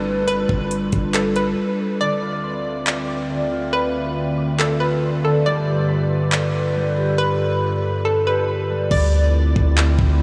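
A warbly, nostalgic tape-like pad with chorus and sidechain pumping opens this hazy, ethereal excerpt of half-time atmospheric cloud-rap at 139 BPM in D dorian, joined at once by a deep, boomy 808-style bass that drops out at 1.5 seconds and returns at 8.9 seconds, while a hollow, bouncy square pluck melody with chorus and analog delay and a smooth R&B drum kit with a knocking kick, metallic hi-hats, handclaps and crash enter at 0.3 seconds, a ringing fingerpicked concert harp adds arpeggios from 2.0 seconds over G7 and Dm7 chords, the hi-hats fall silent for the final stretch, and the dreamy mix is soaked in huge reverb.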